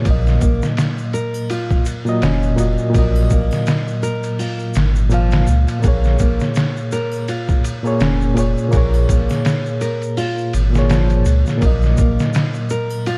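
Trip hop with a dark, melancholic mood and a swung sixteenth-note feel, this short excerpt moves from Ebm to Bbm7 and back over a sampler-style drum kit that is compressed, pitched down and overdriven, with a thumpy kick and a muffled, small-room character. A round analog bass sits deep and up front, while a reedy, lightly overdriven electric piano with tremolo, tape echo and 12-bit sampler grit carries the accompaniment, and a fingerpicked nylon-string guitar adds arpeggios through its own tape echo. An egg shaker and triangle stay close but in the background, and the dry, dark production is coated in vinyl crackle.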